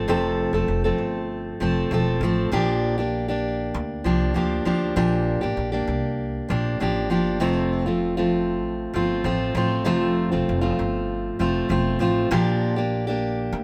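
A light reverb surrounds this sunny, carefree acoustic pop clip in F major, moving at 98 BPM in a straight 4/4 across 13.6 seconds. Up front, a full-bodied jumbo steel-string acoustic guitar is fingerpicked with audible finger squeak, while a dark, woody pizzicato upright bass sits lower in the mix beneath it. Both play throughout as the harmony alternates between F and Bb6, first shifting to Bb6 at 2.5 seconds.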